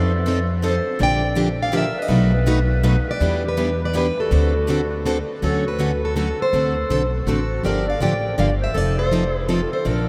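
Drenched in a huge, echoing reverb that suggests a vast hall, this short cut from a longer acoustic string swing piece moves at a brisk 163 BPM in 3/4, its swung eighths giving it a charming, swinging feel. A warm, parlour-toned picked guitar carries the melody up front, while a clear, distant clarinet with vibrato and scooped notes weaves a jazzy second line, and two picked guitars accompany, one with audible finger squeaks and the other bright and set in the background. A dark, woody pizzicato upright bass sits up front beneath them, and the chords move from F7 through Em7 and D7 before a shift at 5.4 seconds to a new passage opening on Dmaj7 and closing on F7.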